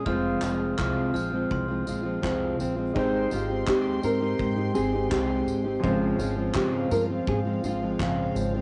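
Acoustic pop at an easy-going, sunny 83 BPM in 4/4, this short cut from a longer piece sits in Ab major and moves from Fm to Abmaj7 and Dbmaj7/Ab. A full-bodied, fingerpicked jumbo steel-string guitar sits up front, with a concert grand piano in the background offering deep bass and long sustain, while a woody, thumpy pizzicato upright bass on gut strings and a distant, roomy indie drum kit with punchy kick, handclaps and tambourine keep things loose. A bell-like glockenspiel struck with brass mallets rings through the opening, falling away at 2.9 seconds. At 3.0 seconds a dark studio string section enters with soft, floating sul tasto chords, and at 3.3 seconds a classical nylon-string guitar with old strings takes up a fingerpicked melody. The glockenspiel, guitars, piano and strings carry a vintage cassette-tape colour, and the whole home recording has light reverb, small-room ambience and a dulled, band-limited top.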